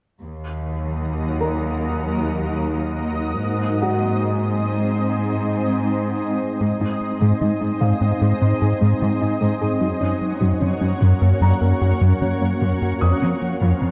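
Tense and brooding, this cinematic excerpt at 75 BPM opens on a rich, bowed cello section holding the bass up front beneath a shimmering, ethereal pad and a soft, muted upright piano with digital delay in the background, then builds from 6.6 seconds as a smooth gliding synth bass riff and a round, tine-like, warbling synth pluck playing arpeggios join over chords moving from Ebm to Ab to Gb to Fm, all set in a moderate scoring-stage reverb with dark production.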